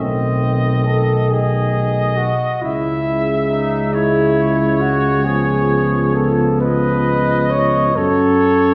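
Serene and tender, this classical, hymn-like excerpt for brass band moves at a slow 45 beats per minute in a rubato 6/8, cut from a longer piece. A trumpet section carries the melody with light vibrato, sounding distant and roomy, while a smooth-topped flugelhorn sits up front on a second line just beneath it. In the background, a mellow euphonium with light vibrato and a bright, vintage-toned trombone fill out the accompaniment. Up front, a mellow tuba anchors the bass with light vibrato. The harmony passes from B7b9 through C#m and C#7 before settling on F#m at 8.0 seconds, all heard from further back in a reverberant recital hall.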